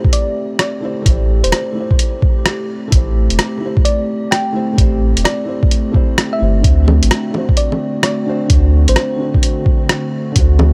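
A dry, close, lo-fi sound frames this wistful, ghostly future garage fragment, cut from a longer piece and swinging at 129 BPM in 4/4 in A dorian, with tuning set slightly low at A4 = 438 Hz. Up front, a muffled, pitched-down electronic kick thumps with overdriven weight, joined at 0.1 s by a compressed, gritty sampler-style kit of bongos, hi-hat and rim click. A soft, round sub bass arrives at 1.1 s, pumping against the kick, while a warbling, detuned tape-like pad holds slow-blooming chords through chorus and its own reverb. Alongside, a felt-muted upright piano adds intimate, dark accompaniment with audible action noise, 12-bit sampler grit, pumping and dub echo. The melody comes from a tine-like, FM thumb-piano pluck with chorus and dub echo, sitting above the harmony as it moves from Am7 to D7 at 6.6 s.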